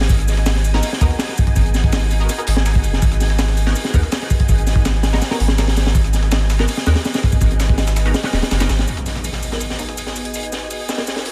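A crunchy, up-front breakbeat kit drives this dark, atmospheric drum and bass and jungle excerpt at 164 BPM in G# minor, its tight kick, high-tuned snare and hi-hats saturated and gritty with a rolled-off top and analog delay, while a compressed, pitched-up sampler-style break of hi-hat, shaker and snare sits in the background. A round, deep sub bass with tube saturation holds the low end until 8.9 s, under a silky, warbling string machine on a G#m7 chord, a breathy wind-like noise layer with built-in reverb, and muted, detuned dub chord stabs with phaser and dub echo. At 8.9 s an electronic impact hits as a filter sweep runs on the stabs, all within a small, echo-heavy room.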